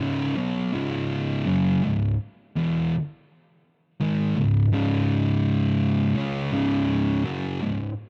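A dry, dark-sounding production frames this brief, ominous metal fragment at a sludgy 83 BPM in 4/4, set in C# minor. A thick, double-tracked electric guitar drenched in fuzz distortion plays alone from 0.0 to 7.9 seconds, picked and placed up front, ranging from C#2 to C#4 and opening on a C#5 chord.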